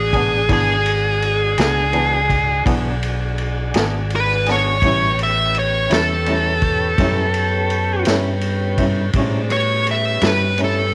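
An overdriven, dark lead guitar solos up front throughout this gritty, rollicking slow blues excerpt in 12/8 at 56 BPM, moving from E7 to A7 over a round fingered electric bass, a twangy, slightly broken-up rhythm guitar with tremolo, a tonewheel organ holding smooth chords through a slow rotary speaker, and a vintage kit of punchy kick, snare, and dark ride cymbal in a studio room.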